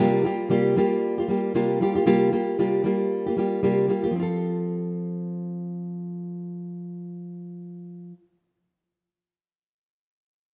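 Sunny and easy-going, this short pop passage, taken from a longer piece, moves at 115 BPM in 4/4 with a gentle 16th-note swing in F major. A lone nylon-string guitar carries the accompaniment from start to finish, fingerpicked in a classical manner with a dark acoustic tone. Small finger squeaks can be heard, and the guitar sits up front in the mix. The harmony rests on a C7sus4 before settling onto F at 4.2 seconds, where the second section begins. A moderate plate reverb adds a soft glow around the instrument, and the whole sound seems to reach the ear from further back in the room.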